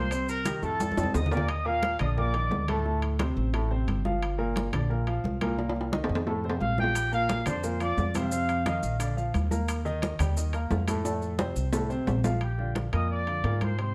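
Joyful and festive, this short salsa cut from a longer piece moves at 176 BPM in 4/4 with a straight feel, set in Bb major and tuned slightly low at A4 = 437 Hz. A punchy, tight trumpet section with light vibrato and a vintage pop character carries the melody in bursts, sounding from 0.0 to 3.0 seconds, returning at 6.6 and again at 12.4. A clear, present grand piano supplies accompaniment throughout, while a woody, growly upright bass with steel strings, played pizzicato, holds the low end up front. Ringing, medium-tuned congas and metal-shell timbales drive the percussion across the whole cut, with grainy, mellow maracas adding texture in two stretches, and drum fills mark the turns at 0.8, 5.6 and 11.0 seconds. Chords shift often, moving through Cm7, F7, Gm7 and Bb6 among others, and a light reverb gives the close, dry percussion a touch of space.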